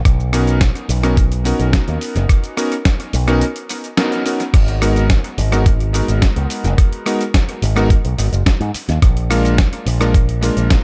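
A sleek, cosmic nu-disco groove at 107 BPM in G# dorian opens with a thumpy, gritty electronic kick up front, a dusty soul drum kit with a fat snare, rim click, shaker and dub echo, and a bright picked electric bass pushed through its envelope filter, before a clangy vintage electric grand piano with long sustain, sidechain pumping and its own dub echo cuts in at 0.3 seconds. The Bmaj7 opening runs into a break at 3.4 seconds and a band accent at 4.0, then the drop lands at 4.5 seconds on G#m7 and moves to A#7 at 9.0. The echo-heavy mix sits in light reverb, in what sounds like a section cut from a longer piece.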